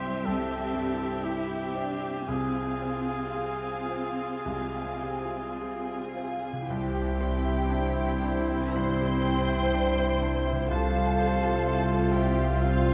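Cinematic orchestral music with a tender, moving character, played slowly and freely in rubato over a short passage cut from a longer piece. A close-miked cor anglais with light vibrato carries the melody up front for the first 6.2 seconds, over a distant violin section on a second line, a bright, long-sustaining concert grand piano, background violas, ringing fingerpicked harp arpeggios and a smooth-topped cello section on the bass. At 5.6 seconds a second, closer violin section takes over the melody with lush, expressive bowing, joined by an airy flute group with lifted highs on a second line. From 6.7 seconds a clarinet and an oboe add further lines in the background, a mellow, very quiet French horn section holds sustained chords, and a distant, even double bass section deepens the low end. The harmony rests mostly on C, with richer shadings over the held bass, and the whole sits in a moderate recital hall reverb with a dark production.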